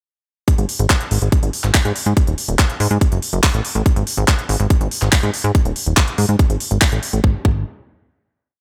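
A tight, tape-warm electronic kick opens this short psychedelic trance piece at 0.5 seconds, pounding a four-on-the-floor pulse at 142 BPM in a straight 4/4. Alongside it, a garage-style drum kit adds crisp closed and open hi-hats and a programmed handclap backbeat, layered and re-recorded in a large room yet kept up front. A punchy, funky analog bass enters a moment later, its sawtooth and pulse-wave tones shaped by a fast-attack filter pluck into a galloping sixteenth-note line that keeps evolving as it decays. The hypnotic, intense groove holds until the drum kit drops out at 7.2 seconds, when the piece moves to its final chord. The mix is dry, with the kick, kit and bass all sitting close to the listener.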